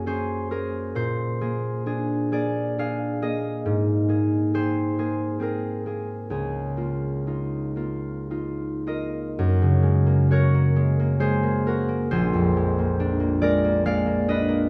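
A dark, warm production sets a solo concert harp up front in a wet recital hall whose reverb lets each fingerpicked note ring. This graceful, serene classical passage, cut from a longer piece, moves in an unhurried rubato three with the harp ranging from Bb1 to F5 over lush ninth-colored chords such as Gbadd9, Bb9 and Db69. The opening phrase returns at 9.4 seconds and plays on until 14.7 seconds.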